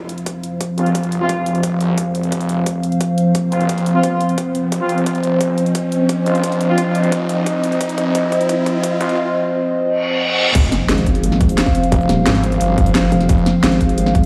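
A straight 4/4 groove of punchy overdriven kick, cracking snare, bright hi-hat, cabasa and crash cymbal drives this futuristic, mechanical dark technical drum and bass fragment, where a moody, wave-folded analog pad pumps above a growling distorted saw bass, distant brass stabs with analog delay punctuate a build-up of background riser and drum fill, and after a reverse cymbal the drop at 10.6 s lands with an impact and brings in a nasal, resonant wobble bass up front, the mix soaked in a lush, dreamy hall reverb.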